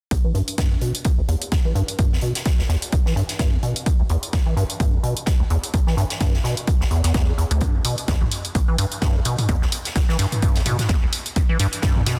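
Trippy and gritty, this acid house excerpt rides a swung sixteenth-note groove, with a squelchy, resonant square-wave acid bass riff carrying a filter sweep, chorus and dub echo up front beside a punchy, tape-warm electronic kick and an overdriven analog drum machine's hi-hat and toms, while a natural-sounding big-band drum kit adds high-passed hi-hat and snare, its hats pumping with sidechain, all under light reverb and a dense, heavily limited modern master.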